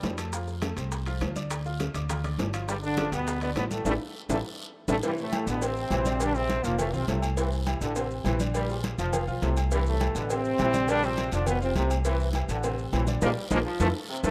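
This rough home demo mix with light reverb captures a sunny, danceable salsa fragment in C major at a brisk 205 BPM, led by an up-front, brilliant trombone section with light vibrato over a woody, thumpy pizzicato upright bass. A clear baby grand piano with short sustain sits in the background among damped congas, tight high-tuned bongos and cowbell, ringing timbales and agogo bells, a raspy guiro and grainy maracas. A punchy second trombone line joins at 5.0 seconds, and the band hits accents at 3.9 and 13.2 seconds, with drum fills at 4.3 and 13.2 seconds.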